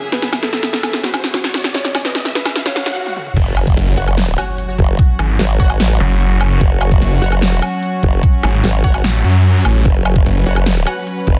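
A dense, heavily limited modern mix with light digital ambience opens this aggressive, heavy wobble dubstep excerpt in F# minor, running at 148 BPM in a half-time feel. A soft, felt-muted upright piano with audible action noise carries a brief melody through digital delay until 2.9 seconds, over reedy, gut-string bowed chords from a background string section gritty with 12-bit sampler texture and sidechain pumping, while a riser, swell and drum fills from a big-room kit with punchy snare and crisp hats build toward a stop. At 3.4 seconds the drop lands with an impact, a knocking, tape-tinged electronic kick and a saturated formant-sweep wobble bass up front. A growling, detuned distorted saw bass joins them up front at 3.8 seconds, and a bright orchestra-hit-like synth stab enters at 4.0 seconds, sitting in the background.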